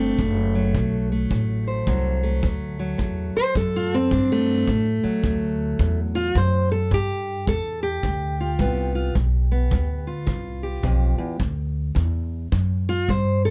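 Laid-back and swaggering, this short excerpt of acoustic country blues moves at 107 BPM in 4/4 with a swung eighth-note feel in D mixolydian, passing from D7 to G7 at 6.9 seconds before settling on D. A fingerpicked steel-string acoustic guitar carries the melody up front with a warm tone and audible finger squeak, while a pizzicato upright bass on gut strings adds a woody, thumpy low end, also close in the mix. A tight kick drum played with brushes sits softer behind them in a dry studio room, entering at 0.2 seconds.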